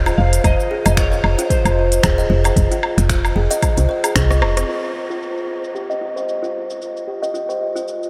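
Swung sixteenths at 113 BPM in 4/4 carry this meditative, earthy organic downtempo passage in F minor: a dark, slightly broken-up slide guitar hovers in the background with chorus and delay, while a round, woody FM bass with tube saturation and sidechain pumping sits up front until 4.6 seconds and a deep, overdriven electronic kick enters at 0.4 seconds. A hollow, ringing kalimba plucks arpeggios through a low-pass filter and delay over an overdriven electronic kit of cabasa, finger snaps, smooth hats, rim click and woodblock, and after a drum fill and band accent the harmony falls away at 4.7 seconds as filter sweeps move across the kit and kalimba, the whole dreamy mix soaked in a huge ambient reverb.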